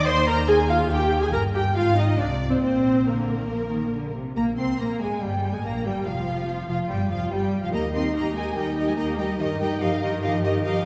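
A string orchestra fills a reverberant concert hall, with the viola section sitting close and up front and the woody double basses also prominent in the mix. This is a quick classical-period movement, stormy and restless in mood, cut from a longer piece. The violins carry the melody with focused, lush tone and vibrato, while a second violin line spans a range from low G3 up to the same high C6 peak. Beneath them, the violas supply accompaniment with soft attacks, expressive portamento and a warm glow, and the cellos and double basses share the bass with bowed vibrato. The harmony moves from Cm/Eb through Eb and Ab, and after a change of section at 4.4 s it shifts to Abmaj9 and Fsus2 before settling back on Eb and Eb/G.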